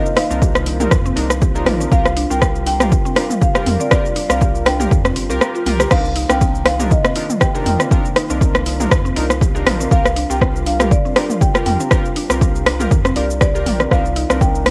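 Earthy and spiritual, this afro house excerpt at 120 BPM in C minor sets a mallet-voiced marimba melody over a deep, moody analog pad swelling in the background, airy, warbling vintage keys stabbing with chorus and delay, a woody synth pluck arpeggiating beneath, and a round analog bass with transformer saturation and sidechain pumping, while an overdriven deep house kit of shakers, rim clicks, hi-hats and toms sits up front with a punchy kick that drops out from 5.4 to 5.9 seconds, all colored by the cassette home recording as Cm11 and Gm7 alternate.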